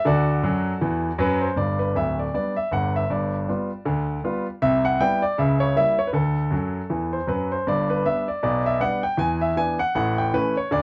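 Captured on a home cassette with a touch of light reverb, this short excerpt features a clear, natural grand piano sitting up front as the only instrument. It is exuberant, swinging stride jazz, reaching from low D1 up to Ab5 across changes that move through G7, Cmaj7, C#dim7 and a closing turn toward A. Brief piano fills arrive at 0.4 and 6.5 seconds, and the piece stays lively through to 10.8 seconds.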